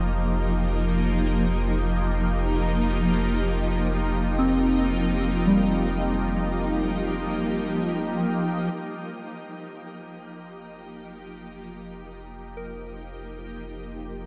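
Ambient music in free time, reflective and spacious, heard as a short excerpt cut from a longer piece. A shimmering, ethereal pad sits up front with sustained chords, its slow attack and long release carrying an octave-up shimmer, with chorus, phaser and shimmer reverb giving it a bright, granular glow. Behind it, a soft FM synth bell plays gentle, decaying arpeggios that reach as high as Bb5, treated with chorus, phaser, tape echo and shimmer reverb. A round analog bass holds a deep, dark F1 beneath them, its tone faintly nasal. The harmony rests on Eb/F before moving to F7(no3) at 8.7 seconds, all of it bathed in a huge, wet reverb with the soft grain of cassette tape.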